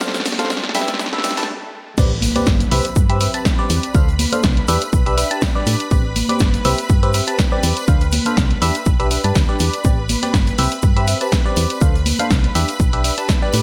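A biting, barking FM electric piano riff with phaser and digital delay leads this bittersweet, energetic piano house clip at 122 BPM in A minor, pumping over silky, detuned string pad chords that move through Dm7, Em7, Am11 and Cmaj7. A punchy, tape-warm electronic kick and a dry analog drum machine sit up front, while a big-room rock kit and softly played tambourine and congas ring in the background, and a very quiet riser and impact mark the build-up and filter sweep into the drop at 2.0 s. A round, dark FM bass enters with that drop, all in a bright 1980s-style digital production with plate reverb and small room ambience.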